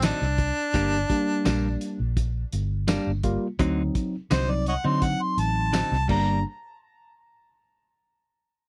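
A brooding, soulful straight-eighth soul blues excerpt cut from a longer piece, where an up-front mellow harmonica sings the melody with light vibrato, tongue slaps and scooped notes over a foam-muted round bass, clean direct-recorded electric guitar stabs, a cloth-damped thuddy drum kit with fat snare and dark cymbals that ends its stretch with a fill at 6.1 seconds, and a worn, slightly out-of-tune tine electric piano that joins at 0.7 seconds, lightly overdriven through a combo amp, all captured in a dry, close 1970s-style studio sound.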